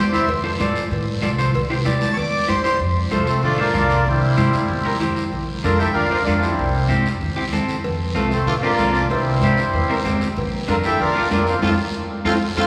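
Joyful and sunny, this cumbia in F major moves at a brisk 190 BPM in a straight 4/4, cut from a longer piece. A reedy, full accordion sits up front and carries the melody, opening with a short solo turn. It is backed by a picked, slightly broken-up electric guitar, a woody, thumpy pizzicato upright bass, raspy guiro, high-tuned congas with a thick-skinned, soft-handed tone, and very quiet, ringing cowbell and timbales. From 3.1 seconds a growling, gritty trumpet adds a second line with light vibrato, though it stays in the background. The harmony circles through F, C and Bb, and the passage closes with a band accent at 11.6 seconds and a drum fill at 11.9 seconds. The whole performance is bathed in the long, wet reverb of a church or concert hall.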